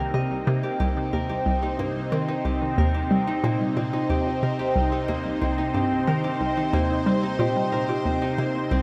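Expansive and cosmic, this short cut from a longer piece of sequencer-driven ambient space music moves at 91 BPM in C minor, resting on a single Cm7 chord. A lush, thick unison pad of detuned sawtooth and square waves holds sustained chords with a slow attack, bright and up front under chorus and phaser, while a fingerpicked concert harp rings out acoustic arpeggios through tape echo. From 0.1 seconds a hollow, bouncy square pluck with a vintage warble and a noise layer plays a low riff with a fast attack and short decay, treated with chorus and tape echo, and a moderate plate reverb spreads a spacious sheen over the sound.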